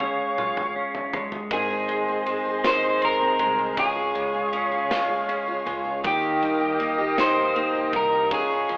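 A slightly broken-up electric slide guitar carries the melody up front through a digital delay in this swaying, heartfelt six-eight pop ballad fragment, set over vibrato-rich, close-miked flute chords, a compressed clean electric guitar with phaser and a polished drum kit whose opening fill and tight kick lead to the entry at 1.5 seconds of boxy parlour acoustic guitar arpeggios and a woody, growly upright bass in the background, the whole band heard live in one room through a large studio reverb with a thin telephone-like sound.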